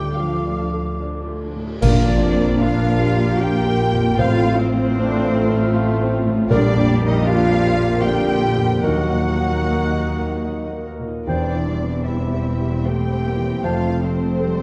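A veiled, muted solo cello carries the melody from 1.8 s, bowed with vibrato, soft attacks and portamento, sounding slightly distant, while a con sordino violin section shares the tune and a second violin section adds a counterline. This is a hopeful, moving cinematic film score for orchestra, cut from a longer piece, moving at 76 BPM in 3/4 with an uneven, rubato feel in Bb major. A pure, hollow concert flute with lifted highs weaves a second line above, a mellow clarinet joins it from 1.8 s, and a dark French horn section holds tight sustained chords in the background. Muted viola, cello and double bass sections, along with a background grand piano with deep bass, fill out the accompaniment and low end, and a very quiet concert harp rings with fingerpicked arpeggios. A band accent at 1.8 s brings bright clash cymbals with concert bass drum and calf-headed timpani played with medium mallets, the timpani continuing until 7.6 s. 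The harmony passes through Dm, Bb, F/A, a darkening Ebm and C/E before settling on F, all set in a dark, warm production bathed in a wet concert hall reverb.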